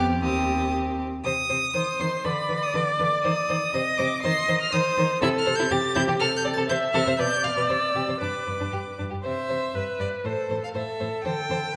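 An up-front, warm viola with expressive portamento carries the accompaniment in this graceful, lively passage from a quick classical-period string quartet movement at 120 BPM in 2/4, turning from C minor to C major at 5.2 seconds. Above it, a rich first violin with vibrato sings the melody close to the listener, while a second violin adds a smooth, even second line and a distant cello holds the bass, each part bowed by a single player. A moderate concert hall reverb surrounds the quartet.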